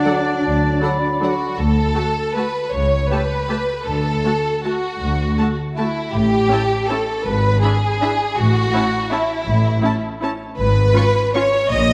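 An up-front violin section, focused and lush with vibrato, carries a second line through this elegant, festive orchestral ballroom waltz in D major, cut from a longer piece. A second violin section sings the melody higher and further back. The tempo sits at 160 BPM in 3/4 with uneven beats and rubato, and the harmony moves from D through A7/C# toward A before landing on C#7/G#. Woodwinds and horns sound together only in the opening moments, all gone by 1.6 s: a bright clarinet, a distant, roomy oboe, an airy wooden flute with crisp attack, a mellow bassoon, and a very quiet French horn section holding soft-attack chords. Underneath, an expressive, close cello section shares the bass with a double bass section that enters at 0.4 s, while a rich viola section fills in the accompaniment. A wet scoring-stage reverb gives the orchestra a spacious sound.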